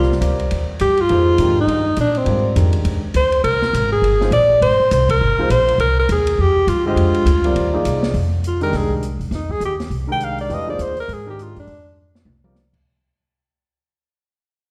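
A clear, up-front alto saxophone carries the melody from the first moment, with vibrato and scooped notes, over an intimate baby grand piano whose action noise is audible, a woody, thumpy pizzicato upright bass on gut strings, and a small-room jazz kit with dark cymbals and a punchy kick. This is intense, hypnotic modal jazz in F dorian, swinging in 4/4 at 204 BPM over a Fm9 chord, heard as a live gig through the venue's PA in a recital hall, with plate reverb and slapback echo on the saxophone and piano. After a band accent at 5.1 seconds, the saxophone takes a solo from 8.1 seconds as the excerpt begins to fade, and a drum fill arrives at 12.0 seconds.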